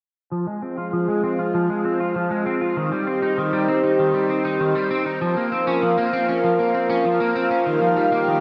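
A bright, clean electric guitar opens at 0.3 seconds with picked arpeggios in a moody yet driving synthwave passage at 98 BPM in 4/4, set in F minor and cut from a longer piece. At 0.7 seconds a shimmering, retro pulse-width pad enters with slow-attack sustained chords, its pulse, sawtooth and square waves thickened by a sub octave and chorus. Both parts sit up front, and each carries a filter sweep across the whole passage, which runs to 8.4 seconds. The guitar passes through ensemble chorus, a low-pass filter, analog delay and shimmer reverb, while the pad has its own shimmer reverb. The harmony moves from Fm to Cm, then to Bbmadd9 and Ebadd9, and a long plate reverb soaks the mix in a dreamy haze.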